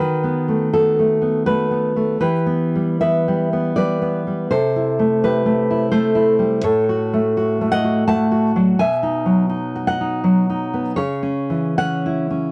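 A full-bodied nylon-string guitar sits up front in this romantic solo classical piece, its fresh strings and thumb-plucked tone carrying a tender, sunny mood. The playing moves in 3/4 at roughly 71-86 BPM with a rubato feel, so the pulse breathes freely across the bar. Spanning A2 to A5, the guitar carries a deep classical character, and finger squeaks give the performance an intimate, human touch. The harmony travels from B7/D# through Em, C6, F#m/A and B before arriving on C#m near 11.0 seconds. A moderate booth ambience frames the instrument closely, and the 12.5-second fragment is cut from a longer piece.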